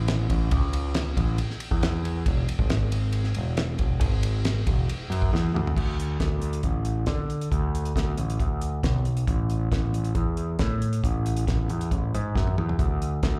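Confident and sunny, this classic rock clip finds a growling, overdriven picked electric bass up front, sitting on a damped 70s acoustic drum kit with a fat snare, tight kick, dark cymbals and a dry, rolled-off top. Heard as a live gig through the venue's PA with a touch of club reverb, the straight 4/4 groove shifts into a new section at 5.8 seconds. Drum fills land at 5.3 and 12.3 seconds.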